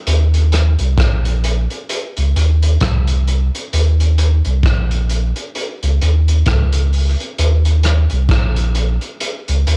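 A deep, round sub bass dominates this short dub reggae excerpt, its sine-like tone sounding with a fast attack and long sustain, thickened by tube saturation and sitting up front in the mix. Beneath it, a crunchy acoustic breakbeat kit of hi-hat, tight kick drum and rim click carries a gritty, saturated character from cassette tape, with a mid-forward tone, a rolled-off top and the feel of a studio room. Both parts play together from the first moments to the end at 9.8 seconds. The groove sits in 4/4 with a lazy swing on the sixteenths, giving the heavy, spacious mood an unhurried sway. The sound is dry and close, with little reverb and the lo-fi intimacy of a home cassette recording.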